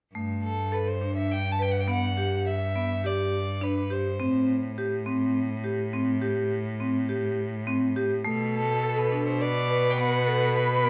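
A rich, smooth violin carries the melody from 0.4 seconds, bowed with vibrato by a single player and placed up front in this hypnotic, pensive passage of contemporary chamber music in 7/4. Beneath it, a bright, biting cello holds the bass line with intense, bowed vibrato, sitting equally close, while a vibraphone struck with hard mallets spins metallic, ringing arpeggios with its motor off, giving an airy shimmer. The harmony opens unanchored, settles on Am7 and then shifts to B7(no3). At 8.3 seconds a dark viola enters with an expressive second line, its vibrato and portamento adding a smooth, dark colour. Close, detailed microphones and light reverb keep each string voice distinct in this short extract from a longer piece.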